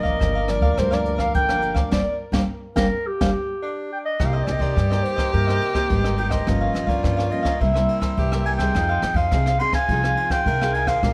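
Bittersweet yet lively, this short cut from a longer samba and choro piece moves at 105 BPM in a straight 4/4, starting in G minor before shifting toward C minor at 4.2 s. A dark, roomy clarinet carries the melody up front in a classical style, while a mellow tenor saxophone with vibrato and a soft attack sits distant on a second line. Underneath, a crisp picked cavaquinho and a fingerpicked nylon-string guitar with fresh strings fill out the accompaniment, and a woody, thumpy upright bass on gut strings anchors the low end. A jazz kit played with brushes adds smooth, dark cymbals, a high-tuned snare with rim clicks, hi-hat, ride and a boomy kick. The full band hits an accent from 1.9 s to 4.2 s, and the harmony then passes through Cm7, Gm7b5 and C7 before landing on Fm7, all wrapped in light reverb.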